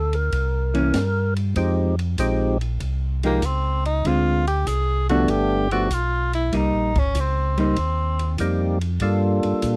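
A late-night, smoky soul jazz organ trio in F minor opens this short cut from a longer piece, with two tonewheel organs sounding together from the start. A percussive, fat, lightly overdriven organ carries the melody while a mellow, round organ with audible key click holds down the bass, and both turn through a slow rotary speaker with vibrato. The acoustic drum kit joins almost at once on hi-hat, kick, ride and snare, its dark cymbals, high-tuned snare and boomy kick sitting lower in the mix under a swung 97 BPM in 4/4. A clean, picked hollow-body electric guitar adds shadowy accompaniment from 0.7 seconds, and a bright tenor saxophone steps forward at 3.3 seconds for a solo full of vibrato and scooped notes over chords moving from Fm9 through Dm7b5, G7 and Cm7. The dry, close 1970s-style studio sound keeps the organs, guitar and saxophone up front.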